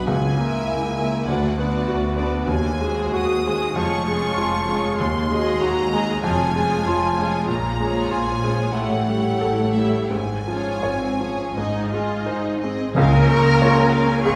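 A clear, intimate grand piano leads this passionate, lyrical romantic movement in Db major, sung over by smooth violins and a rich second violin line, with a soft-attack viola section, lush cellos and warm double basses underneath, very quiet hard-mallet timpani touches at the start and near the close, and a dark, distant French horn section entering at 13.0 s, all in a rubato 4/4 around 83-103 BPM heard from further back in a reverberant scoring stage, cut from a longer piece.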